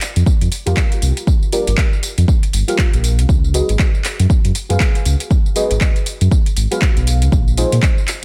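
A deep house groove opens at 0.0 seconds with the drum kit's handclaps, tambourine and metallic hi-hats, overdriven and set in a studio reverb, moving at 119 BPM in 4/4 with a swung sixteenth-note feel. A deep, overdriven electronic kick sits up front alongside a full sine sub bass with an added octave, which spans G1 to Bb2 and pumps through sidechain compression. From 0.7 seconds a soft, dark chord stab enters, blending triangle, sawtooth, sine and square waves with a sub octave and a fast-attack filter pluck that decays. The stab is colored by chorus, phaser, digital delay and a gritty vintage 12-bit sampler character, and it also pumps to the sidechain. Its voicings shift from a rootless C9sus4 to Db9sus4 and then to Bb9sus4, giving this short, smooth and mellow cut from a longer piece a dense, heavily limited modern finish.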